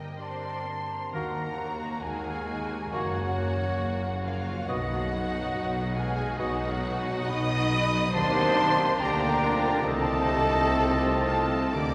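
Solemn and elegiac, this slow romantic orchestral passage, cut from a longer piece, moves with uneven, rubato pacing as a lush violin section sings the melody over a second violin line, a focused viola section, distant cello and double bass sections, and a very quiet, ringing harp playing arpeggios. An airy flute enters at 0.2 s alongside a dark French horn section holding sustained chords. From 1.1 s a clear oboe, a mellow clarinet and a tuba in the bass add soft colour, with a bassoon joining the accompaniment just after, all bathed in the long, wet reverb of a church or concert hall.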